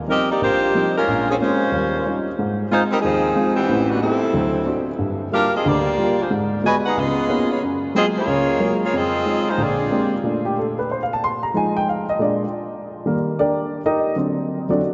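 Drenched in vast cathedral reverb with softened highs, this energetic, brassy swing jazz fragment pairs a bright saxophone section, with light vibrato and soft attacks, carrying the melody up front over a dark, mellow baby grand piano whose action noise is audible, until the saxophones stop at 10.1 seconds and the piano takes a short solo from 10.2 seconds to the cut at 14.9 seconds.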